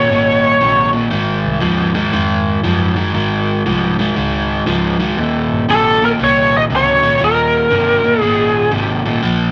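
Electric blues shuffle at 118 BPM in a swaggering, rollicking swing, where a crunchy overdriven rhythm guitar drives the riff up front over a dark, round, foam-muted bass in the background, while a bright, biting overdriven lead guitar plays a brief melody at the start and returns at 5.7 seconds, all set in a wet club reverb on this short cut from a longer piece.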